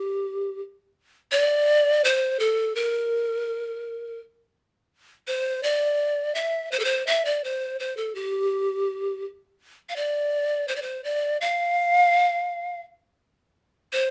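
In an unhurried 3/4 at 83 BPM with a straight feel, this wistful, earthy fragment of Andean folk music sits in D minor and is cut from a longer piece. A single pan flute carries everything from 0.0 to 14.1 s, moving between G4 and F5. Its tone is woody, warm and breathy, with a chiff at the start of tongued notes and a touch of vibrato. The playing has a slightly unsteady, human quality that suits the earthy mood. Close-miked and up front, the flute is framed by a moderate studio ambience that gives it a little space.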